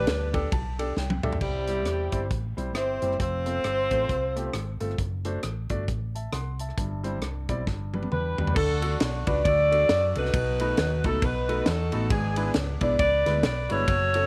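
Reverent and uplifting, this swinging gospel excerpt sets a dark, vintage saxophone section with light vibrato up front on the melody, pausing after 4.8 seconds and returning at 8.1 seconds. A breathy, whispered tenor saxophone with scooped notes and a soft attack joins the melody at 1.4 seconds, over a grand piano whose action noise is audible and which adds fills. A round, amped hollow-body electric bass and a tight funk drum kit with a high-tuned snare, also playing fills, drive the groove in a light studio reverb.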